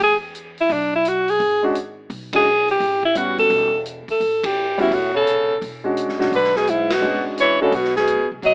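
Swinging and playful, this short cut from a longer small-group jazz piece in the swing and bop vein puts a clear, vibrato-laden alto saxophone up front on the melody, carried by woody, thumpy pizzicato upright bass and an open drum kit with dark cymbals and a boomy kick. An intimate grand piano with audible action noise accompanies from 1.6 to 7.7 seconds, and a breathy, whispered tenor saxophone with scooped notes and a soft attack adds a second line from 4.9 seconds, as the band hits accents at 2.3, 4.4 and 6.8 seconds. The whole track has an AM radio sound with moderate studio reverb, moving from E through A13 to E13.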